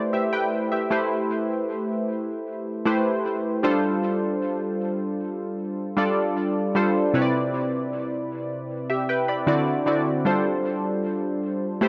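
In a straight 4/4 at 77 BPM, this longing, late-night R&B fragment, cut from a longer piece and tuned to A4 = 439 Hz, features analog keys playing alone for the full 11.9 seconds, their round, airy, detuned sawtooth tone carrying a noise layer, a filter sweep, a fast attack and decaying notes, treated with chorus and tape echo and sitting up front in a dark production with light reverb as the chords move from Am9 to G7sus4, Cmaj9 and D7 before settling back on G7sus4.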